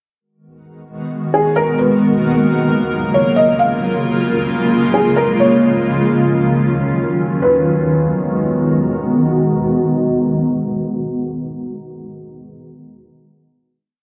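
This short, whole piece of atmospheric cloud-rap drifts in free time, with a hip hop sensibility but a floating, unmetered feel that leaves the mood ethereal and spacious. A granular cloud pad enters at 1.0 seconds and sits up front, holding sustained chords from G#m9 through F#maj7, A#m7 and D#m9 before settling back on G#m9 for the final chord, its detuned, blurred body evolving under its own built-in reverb. Over it, a felt-muted upright piano plays a sparse looping melody from 1.3 to 8.7 seconds, repeated like a sampled loop, its soft, intimate tone carrying audible action noise and trailing a digital delay. The opening breakdown gives way at 7.4 seconds to a lingering final chord, with the piano's loop continuing until 8.7 seconds while the pad sustains toward the close. A lush hall reverb and a low-pass filter round off the sound, wrapping both parts in a hazy, mellow space.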